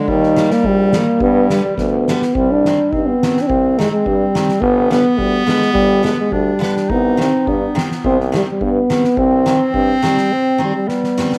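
A light small-room reverb gives this short cut from a longer alpine folk dance-band piece a snug, intimate sound. In a bouncy, jolly 2/4 at 106 BPM, loosely rubato and in C harmonic minor, a mellow euphonium carries the melody up front with a smooth top and light vibrato, while a close-miked clarinet plays a second line in classical style. A clear, vintage-sounding tuba holds the bass until 9.9 seconds, and a picked jumbo steel-string acoustic guitar adds full-bodied accompaniment. A soft-mallet drum kit sits low in the mix, with a fat snare, a boomy kick and hi-hat, and it plays fills that lead into the next section at 2.4 seconds and close out the clip. The harmony moves through Eb, G and C minor, and a break arrives at 10.3 seconds.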